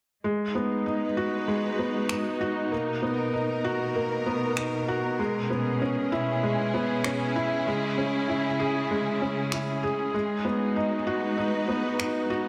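Luminous and hopeful, this short excerpt of piano-and-strings electronica sets a felt-muted upright piano, soft and intimate with audible action noise and a digital delay, playing a riff over sustained chords from a clear, focused symphonic string section with vibrato, moving from G#m7 through Bmaj7, E6/B and C#m. Electronic finger snaps with an overdriven, produced edge join at 2.1 seconds, and a moderate, lush hall reverb gives the whole a studio ambience.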